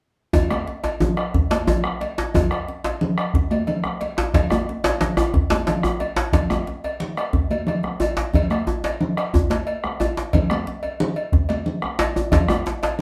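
Heard from further back in a reverberant studio, this driving, festive West African traditional drum ensemble excerpt moves in 12/8 at 120 BPM, with a round, up-front bombo, bright, high-tuned congas played with hard hands, a metallic cowbell, a deep, close djembe, and a second, medium-tuned djembe carrying metal rattles and a compressed, saturated edge.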